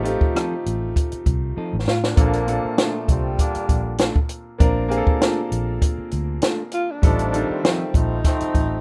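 A compact cocktail drum kit sits up front in this lush, romantic 1970s-style soul fragment, its punchy kick and high-tuned snare heard with hi-hat and rim click in a tight booth. The groove has a gentle swing on the sixteenths, and a drum fill at 1.6 seconds leads into the body of the passage. Underneath, a vintage fingered electric bass gives a dark, round, foam-muted tone, while a brilliant grand piano supplies accompaniment and a clean, picked semi-hollow guitar plays a riff. A breathy alto saxophone takes the melody from 1.9 seconds, mellow and distant with vibrato and scooped notes in a jazz style, and a muted trombone section adds nasal, straight-muted stabs from 2.2 seconds. The harmony moves from F7/A to Bbmaj7 and back, all in a dry, rough home-demo mix cut from a longer piece.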